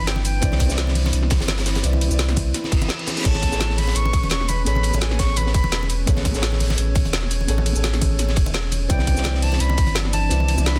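Lush and uplifting, this short excerpt of liquid drum and bass runs at 170 BPM in 4/4 with a light swing on the sixteenths, moving from Cmaj9 to Amaj9 at 3.2 seconds and back to Cmaj9 at 8.9 seconds. A bright silver concert flute carries the melody in airy, close-miked phrases with vibrato and a crisp attack, its notes trailed by delay. Beneath it, a dark, boxy grand piano plays mellow accompaniment through a digital delay, while a glassy FM pad holds ethereal sustained chords in the background, colored by ensemble chorus and its own reverb. A deep, round sine sub bass sits up front with a fast attack, anchoring the low end. The rhythm stacks a tight electronic kick, a produced drum and bass kit with a woody snare, metallic hats, cabasa, crash and ride, a gritty, saturated breakbeat kit with a high-tuned snare and rolled-off top, and background congas, with a reverse cymbal rising into the flute's second phrase at 3.2 seconds. 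The mix is dry overall, dense and heavily limited in a modern style.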